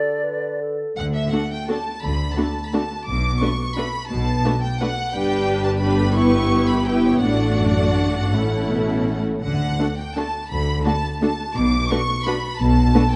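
Heard in a moderate recital-hall reverb, this festive, sweeping classical excerpt in 3/4 and D major moves with rubato at 154-190 BPM. It opens with a brief sounding of pure silver flute, roomy clarinet and mellow bassoon before a lush string orchestra enters between 1.0 and 1.3 s. A smooth, rich violin section with vibrato carries the melody over expressive second violins, a close viola accompaniment and a focused cello section and smooth double bass section on the bass line, moving through D, Bm7, G and A.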